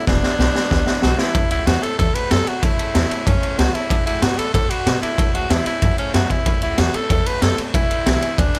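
Rockabilly at 188 BPM in A major, this rowdy, upbeat fragment of a longer piece features a drum fill from the raw garage kit through its opening bars, its high-tuned snare, boomy kick and ride cymbal sounding saturated and gritty up front in a small room, while a woody, thumpy upright bass on gut strings anchors the low end. A raspy, forceful tenor saxophone carries the melody in a pop-style solo with light vibrato and digital delay, riding over a chord run of E7, A, D, A and back to E7. Far beneath sit a very quiet picked steel-string acoustic guitar, bright and full-bodied with audible finger squeak, and a jangly, metallic tack piano, all in a dry mix with little reverb.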